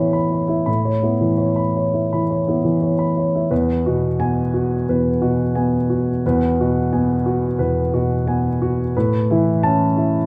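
Tender and hopeful, this short fragment of neoclassical minimalist piano unfolds at a gentle rubato pace, a lone grand piano set up front with a dark, mellow, vintage tone and long sustain ranging from E2 to B5. Its harmony rests on an Aadd9 chord, opens onto Eadd9 at 3.5 seconds, and returns to Aadd9 at 8.9 seconds, all held in a moderate large-studio reverb that feels like a live performance in one room.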